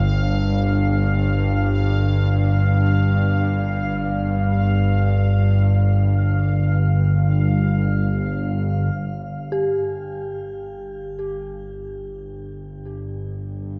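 A dark, desolate ambient drone in free time opens on a tense, string-like bowed drone sitting low and up front, its sawtooth body edged with a noise layer, ring modulation and vibrato over a Fsus2/G harmony. Alongside it, a faint bubbling texture sustains high, its resonant tone stepping through random filter changes, softened by chorus and a shimmer reverb. At 9.0 seconds the bubbling stops, the harmony gives way to an open, chordless stretch, and the drone swells through a gradual fade-in. From 9.5 seconds an eerie, inharmonic FM bell, detuned and mellow, sounds decaying arpeggios up front, coloured by chorus, phaser, tape echo and shimmer. A vast cathedral reverb with a long 5.1-second tail surrounds the whole, leaving this fragment of a longer piece hanging in dark, echoing space.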